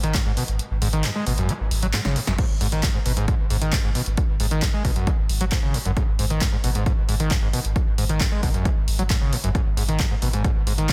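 Dark and relentless, this driving peak-time techno excerpt is led by a screaming, squelchy sawtooth acid riff, resonant and up front with filter sweeps, distortion, chorus and delay, over a thick, saturated sine sub bass, both pumping against the sidechain, while a punchy analog drum machine supplies snare, handclaps, pumping hi-hats and crash cymbal with a short room on the snare, claps and hats, and the electronic kick drops out from 0.6 to 2.4 seconds before a drum fill leads into the drop at 2.4 seconds, set in a dense, heavily limited mix with little reverb.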